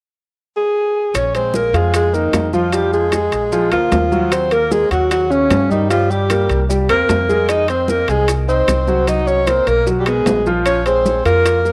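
Afro-Cuban jazz in Bb minor at 151 BPM, fiery yet sultry, this fragment opens with a warm, subtoned alto saxophone carrying the melody up front through a touch of tape echo, joined at 1.1 seconds by a growly pizzicato upright bass and a bed of hand percussion: ringing metal-shell timbales, round low-tuned bongos, woody claves, grainy maracas and, from 1.2 seconds, background congas. A clear tenor saxophone with scooped notes adds a second line beneath the lead, while an intimate grand piano with audible action noise and long sustain fills in chords moving through Ebm7, C7sus4, Fm7 and Bmaj9. The cassette home recording has light reverb and studio ambience.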